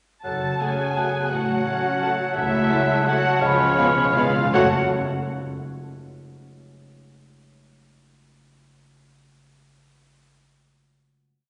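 In rubato 3/4 at 151-183 BPM, this brief, bittersweet and dark orchestral ballroom waltz in F# minor slows from 1.9 seconds as muted, veiled violins carry the tune with vibrato. A second violin section adds sustained chords, violas a counter-melody and cellos a bowed melodic line, while double basses hold the bass on the beats. Clear oboe and a very quiet clarinet, mellow bassoon and hollow flutes sound sustained chords in the rhythm of the tune, and mellow French horns add after-beat sustained chords. Meanwhile a bright concert harp rings out broken chords and lingers alone on the final chord to 5.7 seconds. Round, soft-mallet timpani enter at 2.4 seconds with single strokes and a fill over the closing cadence, all set in a wet concert hall reverb.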